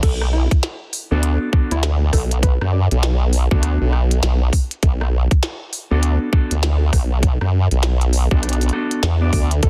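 A dense, heavily limited digital mix carries this funky, playful glitch hop fragment at 100 BPM in 4/4 with a swung sixteenth feel over a steady Bm7 in B minor pentatonic, where an up-front, detuned formant-sweep wobble bass with chorus and a tight, layered electronic kick drive things while a glitchy kit of clicky hats, rim clicks, crash and a tiny overdriven, soft-clipped snare sits behind them, a dark, clean, fingered electric guitar plays stabs with sidechain pumping and delay from 1.1 to 9.5 seconds, and a woody, wave-folded pluck melody with subtle chorus and delay appears in the background from 0.0 to 3.2 seconds and again briefly at 9.6 seconds.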